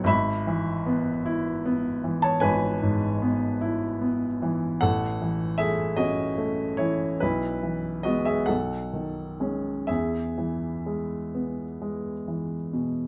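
A romantic classical nocturne for solo piano in E major, this short excerpt drifts by at a slow, rubato 12/8 pace of about 41-53 BPM with a nostalgic, dreamy mood. A warm, natural baby grand sits up front in light reverb, ranging from G#1 up to C#6 as it moves through E/G#, F#m7/A and E/B. A B13 chord at 8.5 seconds resolves onto E at 9.9 seconds.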